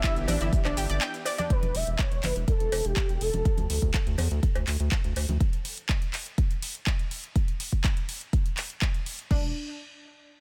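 An excerpt of dreamy, bittersweet progressive house at 123 BPM in E dorian opens on a drop where a warbling, vintage portamento lead with chorus and delay sings over a barely audible FM bell, a lush detuned supersaw pad and a punchy unison pluck trailing dub echo, the pad and pluck both pumping to the sidechain, while a punchy up-front kick and a house kit with metallic hats drive the groove, a round, deep analog bass enters at 0.2 s, hard-handed cowbell, congas and woodblock join at 0.3 s, and the drums carry on until 9.4 s as the pluck and bass return briefly on a Dsus2/E chord at 9.3 s.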